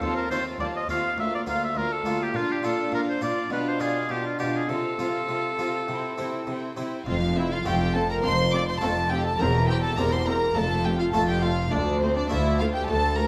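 Brilliant and lively, this excerpt of a baroque-style concerto movement in F major at 103 BPM sets a clear, up-front solo oboe over dark, gut-strung first violins, a second violin line, a background viola section, distant cellos and an airy, bright harpsichord, until the oboe stops at 6.8 seconds and a rich double bass section enters at 7.1 seconds, all heard in a reverberant recital hall.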